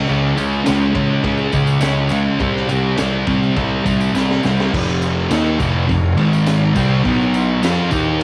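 Menacing and gritty, this short cut from a longer garage rock piece stomps along at 103 BPM in a straight 4/4, set in F minor. A thick, double-tracked fuzz guitar sits up front with a distorted riff that carries the grain of cassette tape, while a picked electric bass, overdriven and fuzzy, grinds underneath from the first moment. A jingly tambourine hangs in the background from 0.1 seconds, and at 0.4 seconds a crunchy breakbeat kit arrives with a punchy kick, high-tuned snare, dark ride and crash cymbals, and a saturated, rolled-off top. A drum fill at 4.2 seconds leads into a second section at 4.7 seconds, where the harmony moves from Db5 and C5 chords to F5, Ab5, C5, B5 and back to F5. The whole thing sounds like a dry home recording on cassette, with little room sound around the parts.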